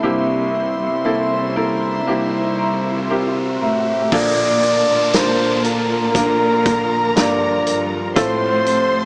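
A slow, straight 4/4 pulse carries this hopeful, emotional pop ballad, heard as a short cut from a longer piece. A dark flugelhorn sings the jazz-inflected solo melody with scooped notes, over a clear, short-sustained baby grand piano accompaniment, a soft-edged sul tasto string section floating in the background, and a clean, picked electric guitar playing arpeggios with a subtle chorus. A rich cello section bows the bass line with intense vibrato and a smooth top. An electronic riser builds from 0.8 seconds, and at 4.1 seconds a lush violin section adds an expressive second line with vibrato and portamento while a loose indie drum kit enters, its punchy kick, medium-tuned snare, hi-hat and crash sounding gritty and saturated with a rolled-off top. Light reverb and a small-speaker quality give the mix an intimate feel.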